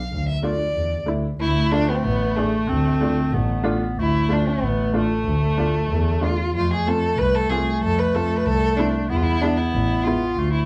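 Klezmer in 2/4 at 94 BPM, bittersweet and soulful, moving through D dorian sharp4 from Dm to F and then E in this short cut from a longer piece. A rich, smooth, even violin with vibrato carries the melody up front, bowed by one player over a dark, floating double bass played sul tasto with a soft attack, while a worn, woody upright piano, slightly detuned, supplies accompaniment from 0.4 seconds. At 1.4 seconds a clear, close-miked clarinet in classical style joins with a second line, all set in light reverb within a dark, warm production.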